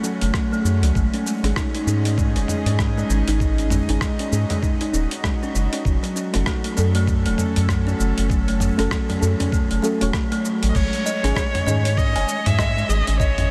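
A swung sixteenth-note groove at 98 BPM drives this short organic downtempo cut from a longer piece, with a gritty, tape-warm sampler-style kit of cabasa, hi-hat, rim click, toms and crash over a thumpy electronic kick, while a round, up-front analog bass pumps beneath woody, airy kalimba arpeggios that pass through low-pass filtering and analog delay. The mood is mystical, moving between F#m and G#sus4 as a deep, mellow chord stab with analog chorus and a filter sweep sits in the background, and a bright, detuned bowed-like drone with vibrato holds sustained chords until 10.7 seconds. At that point a clear, focused kamancheh takes the melody up front with vibrato, portamento and tape echo, all within a dreamy mix soaked in huge ambient reverb.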